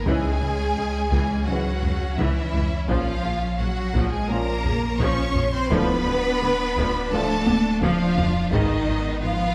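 A cinematic hybrid of orchestral and electronic film scoring, this brief cut from a longer piece feels tense and vast, moving in a straight, unhurried 4/4 over minor chords that shift from Dbm through Bbm and Dm to Abm. Two violin sections lead, the upper one carrying an expressive, distant melody with vibrato and portamento while the lower sustains a smooth, even second line. Violas add clear, focused accompaniment, rich cellos and background double basses with portamento anchor the low strings, and a round, sine-like sub bass sits deep beneath them. A dark, very quiet French horn section and background mellow trombones hold sustained chords until 8.8 seconds. A band-limited, vintage-sounding taiko ensemble struck with heavy sticks plays in the background, with a drum fill from 7.5 to 8.5 seconds, all set in a wet scoring-stage reverb.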